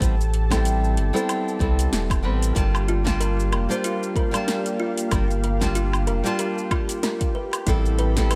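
Sunset chillout in G dorian at 94 BPM with a swung 16th-note feel, this short, wistful cut from a longer piece sets a bright, fingerpicked nylon-string guitar with delay up front over a round sine sub bass and a thick, detuned sawtooth pad with chorus holding sustained chords. An overdriven electronic kick and a deep house kit with punchy snare, metallic hats, shaker and woodblock drive the groove, while a woody kalimba with delay joins at 2.6 seconds with short thumbnail-plucked arpeggios. The harmony moves from Am9 to Gm9 and back to Am9 at 7.4 seconds, all bathed in light digital reverb.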